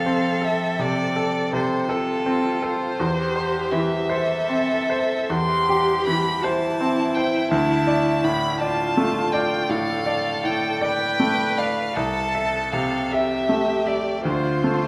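Classical slow romantic movement for piano trio in a yearning, solemn 12/8 with rubato, where a smooth, up-front violin sings the melody with vibrato, a focused, more distant cello carries a second line beneath it, and a bright, polished grand piano supplies short-sustained accompaniment, all cut from a longer piece and set in a reverberant recital hall.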